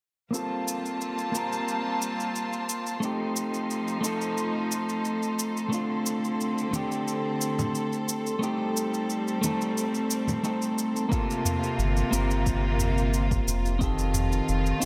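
This wistful sunset chillout excerpt opens with an electric guitar at the edge of break-up, fingered, compressed and up front, its tone shaped by a filter sweep, low-pass filtering and digital delay, alongside a clear studio string section holding bowed chords with light vibrato, a biting intensity and a smooth top. Electronic shaker and toms keep a straight pulse underneath, with a produced, small-room character. Soon an airy, breathy, wind-like tuned noise layer drifts in the background with its own reverb, and soft-handed congas, bright yet vintage and band-limited, join at 6.7 seconds. The harmony moves from Gm11 through F7, F69/D and Am7b5 before returning to Gm11. At 11.1 seconds a deep, layered, tape-warm electronic kick arrives, followed at 11.8 seconds by a round, dark analog bass with a fast attack, set up front beneath a light reverb.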